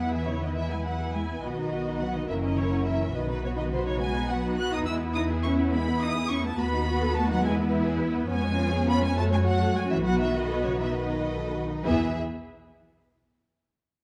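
Dark, warm production on a scoring stage with moderate reverb frames this cheerful, graceful classical-period movement for string orchestra in E major, a quick 6/8 at 69 BPM counted in dotted quarters, where focused violins with a smooth top carry the melody over an even second violin line, expressive violas supply accompaniment, and soft-attack cellos sit close beside an up-front double bass section in the bass, every section bowed with vibrato, before the harmony settles on E at 11.9 seconds.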